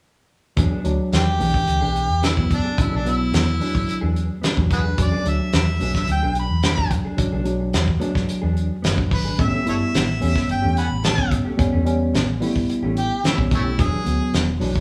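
Straight-eighth soul blues at 109 BPM in E mixolydian, gritty and rollicking. An up-front soul drum kit with a fat snare and tight kick plays alongside a dark, round, foam-muted fingered bass and a worn, slightly out-of-tune tine electric piano played through a combo amp. A compressed, clean electric guitar adds background stabs with spring reverb, while from 1.1 s an overdriven, clear harmonica leads a jazz-style solo full of tongue slaps, scooped notes and light vibrato. The band plays live in a moderate stone room, moving from E7 to A7 at 9.4 s in this cut from a longer piece.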